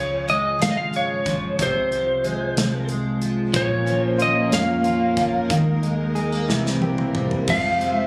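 Captured on a phone in the room with a club-like reverb, this short cut from a melancholic, dramatic six-eight pop ballad in F minor moves at 61 BPM. Up front, a slightly broken-up, compressed lead guitar carries the melody through a digital delay over a double-tracked, full-bodied jumbo acoustic with audible finger squeak, a dark, round hollow-body bass, and a polished, airy drum kit with a punchy kick and crash, hi-hat, snare and toms. At 3.5 seconds, a veiled, con sordino string section adds sustained chords and a bright, direct-recorded clean guitar arpeggiates in the background as the harmony passes from Bbm through Ebsus4 and C7, and a drum fill at 6.5 seconds leads back to Fm.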